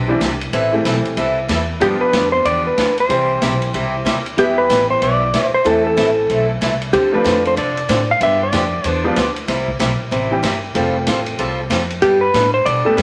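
A swung 188 BPM 4/4 groove from a big-band drum kit with a punchy kick and medium-tuned snare drives this playful, down-home western swing fragment in C major, where a thumpy, woody pizzicato upright bass, a boxy picked acoustic archtop guitar with finger squeak and a brilliant upright piano accompany a dark, compressed lap steel guitar that sits up front with slide and volume swells from 1.8 to 9.0 seconds before returning at 12.0, the whole bathed in wet studio reverb.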